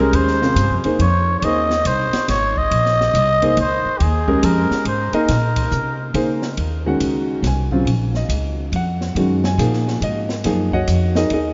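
A swung 3/4 pulse at 140 BPM carries this hypnotic, spiritual modal jazz excerpt, cut from a longer piece, which rests on a Bb9sus4 in Bb dorian before moving to Ebm11 and Eb dorian at 6.6 s. An acoustic drum kit sits low in the mix with dark ride and hi-hat, a high-tuned snare and a boomy kick, while an up-front pizzicato upright bass on gut strings gives a woody, thumpy low end. A clear, worn concert grand piano with deep bass and short sustain accompanies throughout. A cup-muted trumpet carries a veiled, raspy solo melody with growling grit, scooped notes and light vibrato, and falls silent at 6.2 s. Everything floats in a vast, echoing cathedral reverb whose long, wet tail and dulled top end give the music its meditative haze.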